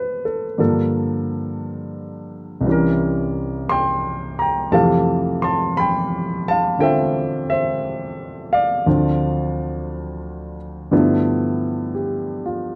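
A lone baby grand piano, natural and up front, carries this tender, romantic jazz ballad fragment at a slow 58 BPM swing in 4/4, moving through Am7, Gm7, C7b9, Fmaj9, Dm7 and G13 across a range from C2 to C6, tuned to A4 = 445 Hz and set in a dark, warm production with a short, wet club reverb.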